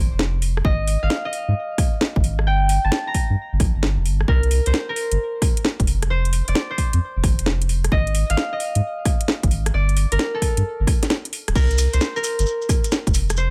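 Skippy and moody, this short two-step UK garage excerpt sets a mellow, ringing concert harp melody with digital delay over a deep, saturated sub bass, a punchy, tape-warm electronic kick and a house kit of cracking snare, rim clicks, metallic hats and crash cymbal, all in a fairly dry space, before a grainy shekere slips in at 11.6 seconds.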